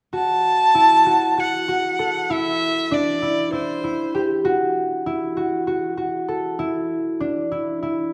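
A recital hall's reverb surrounds this brief contemporary instrumental excerpt, lending the two players a lingering, resonant glow. The mood is restless and playful, carried in an uneven 7/8 metre with a straight feel. A single bowed violin sits up front with the melody, its tone rich and smooth, even and touched with vibrato, before it stops at 4.2 seconds. A concert harp, also close and present, plays thumb-plucked arpeggios in a bright, ringing voice that continues alone until 8.1 seconds. Underneath, the harmony shifts from Esus24 to Cadd9 and back to Esus24, keeping the passage open and unresolved.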